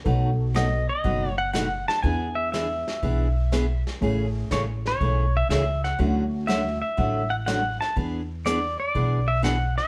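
A roomy live-band sound with moderate reverb and a faint mains hum frames this down-home, playful western swing excerpt, where a clean, compressed pedal steel guitar sings the high melody with volume swells and slide over bright, fresh-stringed picked acoustic guitar, a woody, thumpy upright bass, a vintage brush drum kit with a punchy kick and rolled-off top, and a detuned, jangly honky-tonk upright piano in the background that drops out at 6.8 seconds.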